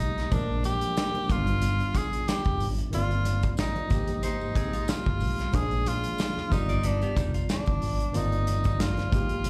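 A bright, up-front tenor saxophone sings the melody with vibrato and a soft attack over a worn, slightly out-of-tune tine electric piano, both carrying a slapback echo, in this bittersweet, silky excerpt of lush 1970s-style soul at 92 BPM with a light sixteenth-note swing. A dark, round, foam-muted electric bass and a punchy studio drum kit hold the groove, while very quiet congas and a jingly tambourine enter at 0.3 seconds. After a brief flicker at the very start, a scooped, clean electric guitar picks a riff soaked in spring reverb from 4.2 to 8.1 seconds, all heard as a live club gig through the venue's PA over chords such as Bb7, G7b13 and Cm11/G.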